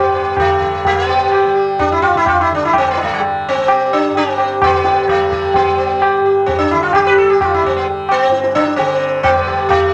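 An up-front, buzzing sitar with sympathetic strings carries the melody in this radiant, devotional Hindustani classical piece in raga Khamaj on G at 129 BPM in 5/4, which speeds up over the 9.9 seconds cut from a longer performance, over a softly plucked, shimmering tanpura drone, while a high-tuned, ringing tabla enters at 0.4 seconds, all set in moderate studio reverb.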